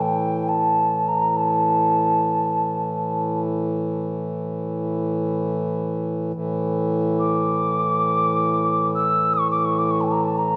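Haunting and meditative, this short cut from a longer world-meditation piece drifts in free time, with a clay alto ocarina carrying an airy, hollow melody between G5 and E6, tongued and touched with vibrato, its highs gently rolled off. Beneath it, a hand-pumped harmonium holds a reedy, nasal drone between A2 and E3, close-miked, dry and full, with a breathing quality. Both parts sit up front and sound together from 0.0 to 10.6 seconds, within a dark production that carries the ambience of a small room and the long tail of a recital hall.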